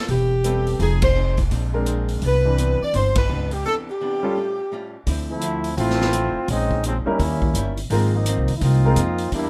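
A swinging 4/4 pulse at 169 BPM drives this energetic big band swing excerpt, with the distant, roomy drum kit working hi-hat, ride cymbal, snare and a boomy kick, while the woody upright bass plays pizzicato, low and up front. The saxophone section carries the opening melody with a loose, vibrato-rich tone over chords moving from Am9 through Fm7, Bb9 and Cmaj9. Band accents punctuate this first passage before a break at 3.6 s. The trombone section enters at 5.3 s, bright and close, with vibrato, taking a solo over Dm9, Bbm11, Eb7b9 and Ab69. Beneath it all, a clean, compressed archtop guitar sits in the background, and a clear concert grand piano with a worn character adds accompaniment in two stretches. The rough home demo mix carries a light reverb.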